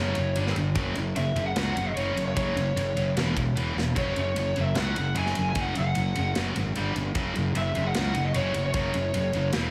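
Driving straight 4/4 rhythm at a brisk hard rock pace sets a heavy, aggressive tone in this short cut from a longer piece. A scooped, high-gain rhythm guitar, double-tracked and up front, hammers out a low riff from the start alongside a growly, fuzz-laden fingered bass that sits punchy and forward beneath it. The tight metal drum kit comes in at 0.2 seconds with a tight kick, medium-tuned snare and bright ride cymbal, captured with an airy, polished big-room character, and it breaks into a fill at 3.8 seconds. Over the top, a lead guitar through a small cranked amp carries the melody in a higher register, its warm, overdriven tone trailed by analog delay. The chords move among G5, F#5 and E5 power shapes, and a small room ambience frames the whole performance.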